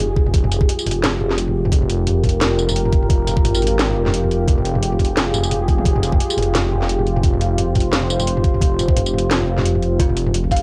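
Half-time drum and bass in F minor at 174 BPM with a swung, cinematic and spacious mood, cut from a longer piece, built on a deep, rumbling detuned saw bass and a moody analog pad holding an Fmadd9 chord with chorus and sidechain pumping, while a cassette-tape drum kit with cracking snare, metallic hats, tambourine and toms plays from the start and is joined by a knocking electronic kick from 0.2 seconds, and a woody, hollow kalimba adds arpeggios through tape echo from 10.0 seconds, all set in light digital ambience on a home cassette recording.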